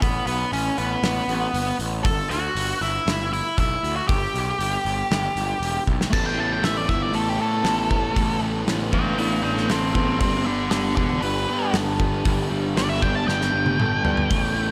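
A big arena sound with lush hall reverb frames this bittersweet, anthemic quiet-loud alternative rock excerpt: a loose indie drum kit with dark cymbals and a punchy kick plays a half-time opening up front beside a growly, overdriven picked electric bass and a distorted octave-fuzz lead guitar carrying the melody, until at 6.1 seconds the lead breaks into a solo as a double-tracked fuzz guitar riff and lo-fi, slightly broken-up arpeggios from an electric guitar through a small old amp, touched with spring reverb and analog delay, join in the background, with drum fills at 5.9 and 13.3 seconds.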